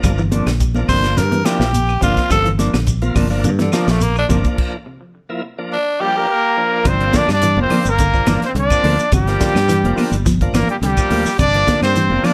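Afrobeat at 106 BPM in G dorian, intense and funky, this excerpt rides a punchy, round fingered bass and a dry funk drum kit of crash, hi-hat, kick and snare, backed by high-tuned congas, grainy shekere and woody claves, with a hollow-body guitar playing arpeggios through tape echo, dark clean guitar stabs with tremolo and a bright, lightly overdriven tonewheel organ on slow rotary speaker, while a raspy, gritty tenor saxophone solos up front from 0.9 s with a stop at 4.6 s before a breathy, whispered trumpet carries the melody from 6.0 s over a clear trumpet second line, set in a moderate studio reverb.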